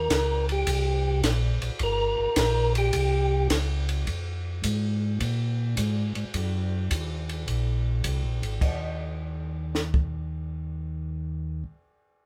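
Soul jazz organ trio cut from a longer piece, with a soulful, greasy mood and a swinging groove. A tonewheel organ carries the melody as a short solo at the start, its tone round and dark with a percussive third-harmonic attack, turning through a slow rotary speaker until it drops out at 3.5 seconds. Underneath, a second tonewheel organ holds down the bass with a mellow, clean sound and audible key click, also through a slow rotary speaker, and it carries on until 11.6 seconds. A compact cocktail drum kit plays dry and acoustic on crash, ride, hi-hat, a high-tuned snare and a punchy kick, with dark cymbals, before stopping at 10.1 seconds. The harmony moves from a rootless dominant chord through minor and suspended colours before falling away at 8.6 seconds, and the trio sits up front in a moderate studio room, heard playing live together.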